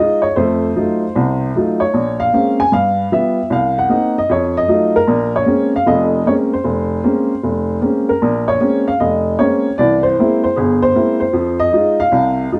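A swinging 153 BPM pulse in 4/4 carries this late-night solo jazz excerpt in Bb minor, where a lone upright piano, woody and boxy with audible action noise and long sustain, sits intimate and up front in a large studio room, moving from F7b9 through Bbm9, G7 and Cm7b5 before reaching C7b13 at 9.8 seconds and Fm7 at 11.3 seconds.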